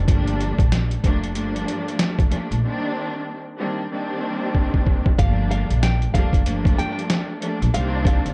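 A pitched-down, muffled sampler-style drum kit with a thumpy kick and overdriven grit sits up front in this dark, tough boom-bap hip-hop cut at 94 BPM in G minor, swung on the sixteenths, with a break at 2.6 seconds and a drum fill at 4.5 seconds. Woody pizzicato upright bass and a lush, bowed string section with vibrato and portamento, given a cassette-tape tint, move between Gm9 and Cm9 inside a dark, reverberant room. At 5.2 seconds a fingerpicked classical nylon-string guitar enters in a high register, sitting quietly in the mix with slapback echo, carrying the melody through the rest of this short excerpt.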